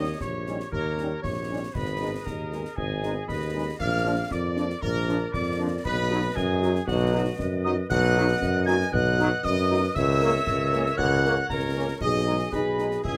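A close, detailed recording with little reverb captures a stern, martial military-style march for wind band in 2/4, cut from a longer piece. The trumpet section carries the melody with light vibrato, while a bright, pure wooden piccolo and a smooth-topped woodwind section add second lines above a mellow, punchy French horn accompaniment and dark, roomy trombone chords in the background. A warm tuba sits up front on the bass, and concert snare, concert bass drum and clash cymbals enter at 0.2 s with dark cymbals and a close, dry acoustic sound.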